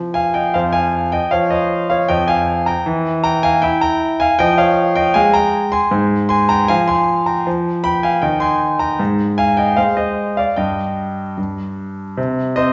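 A wet recital-hall reverb with a 1.4-second decay surrounds this recording, which is heard from further back in the room, and its top end is rolled off above 7.5 kHz. At its center is a solo grand piano whose bright, brilliant tone still feels intimate and present, with audible action noise and long sustain. The music is a dramatic, serious classical-period sonatina in a straight 2/4, tuned to A4 = 435 Hz and ranging from F2 up to C6. The harmony moves through shadowed minor colors, such as an Fm11, an Edim and an Fdim, opening onto a richer Abmaj9 before settling on Cm/Eb and Fm/Ab. The chords fall away near 11.4 seconds, and the passage ends on a lone C5 at 12.2 seconds, as a fragment cut from a longer piece.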